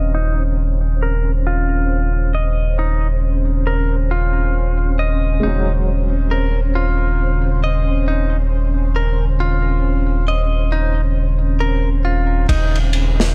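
Trip hop in Eb dorian at a slow 68 BPM, this smoky, dark passage drifts on a lazy 16th-note swing, cut from a longer piece. A round, sine-like sub bass holds a deep Eb1 up front, while a string machine voiced as cellos lays down full-bodied sawtooth chords with a slow attack, long release, ensemble chorus and a moving notch, under a filter sweep. A direct-recorded clean electric guitar picks bright, twangy, compressed arpeggios roughened by 12-bit sampler grit and tape echo, also under a filter sweep. Deep in the background, a soft, felt-muted upright piano adds intimate accompaniment with tremolo and tape echo. The harmony moves from Ebm7 to Ab7sus4/Eb at 5.4 seconds, and at 12.5 seconds a crunchy, saturated breakbeat kit of tight kick, medium-tuned snare and dark ride cymbal enters over an Eb7 chord lacking its third, all set in low-passed studio ambience.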